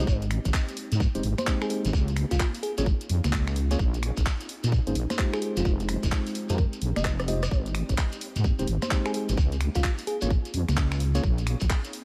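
A deep, wobbling bass with a dark, compressed edge enters at once alongside a mellow tine electric piano playing clean stabs through tape echo, opening this soulful, bouncy two-step UK garage excerpt in Ab major at 129 BPM, with a 63% swing on the sixteenths. Above them, a bell-like FM electric piano carries a sparkling melody from F4 to Eb5, treated with chorus, phaser and tape echo, until it stops at 10.3 seconds. Underneath, a very quiet ethereal pad sustains airy, detuned chords through ensemble chorus and its own reverb. A tight, up-front electronic kick drives the groove with a layered garage kit of congas, finger snaps, handclaps, rim clicks and warm hi-hats, while a grainy, vintage shekere adds texture and the kit plays a short fill at 7.0 seconds. The harmony cycles through Abmaj7, Db6, Bbm11 and Fm9, and the whole is set in a digital ambience touched by vinyl crackle and a faint mains hum.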